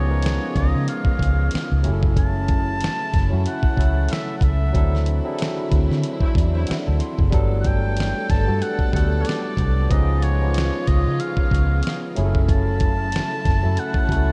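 R&B neo-soul with a relaxed, sensual mood, cut from a longer piece, where a clear, close-miked oboe sings the melody with delay over barky, lightly overdriven tine electric piano, lush bowed strings in the background, a dark, foam-muted electric bass and a gritty, compressed sampler-style drum kit that joins at 0.2 seconds, while a distant saxophone section adds a brief stab at 6.2 seconds during a band accent and a tine electric piano fill.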